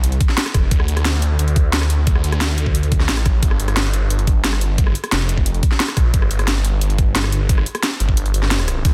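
Mechanical and dark, this short excerpt of technical drum and bass moves in a straight 4/4, with a dense, heavily limited master and little reverb. A phased, detuned saw bass carries the low end from the start, thick and swirling, blending sawtooth, square and sine tones in unison with a fast attack and long sustain, and it sits up front with tube saturation. The drum kit plays throughout with a cracking snare, bright hi-hats, ride cymbal and rim clicks; the kit is overdriven, layered and re-recorded in a small room for a close, forward presence. An electronic kick joins at 0.2 seconds, knocking and overdriven, and it sits as the loudest part. It drops out between 8.2 and 8.8 seconds, leaving the bass and kit to carry those moments before it returns.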